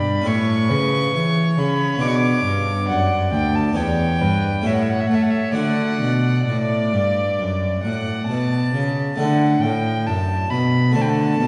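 In a straight 4/4 at 68 BPM, this excerpt from a baroque-style classical sonata movement with continuo moves in D major with a flowing, radiant mood, tuned to A4 = 443 Hz. A warm violin carries the melody between D5 and D6, bowed by one player with light vibrato and a reedy, gut-string period tone. A second violin, rich in colour, traces a supporting line from A4 to A5 in the same period manner. Beneath them, a Flemish-style harpsichord with two sets of strings supplies a plucked, airy and full accompaniment across D2 to C5, while a close, up-front cello grounds the bass from D2 to A3. The harmony passes through A7, Bm, Em7 and A7 before settling on D, with the music shifting into a new section at 9.2 seconds and reaching D7 at 11.0 seconds. The ensemble is heard from further back in a wet scoring stage, its reverb lingering for about 2.0 seconds.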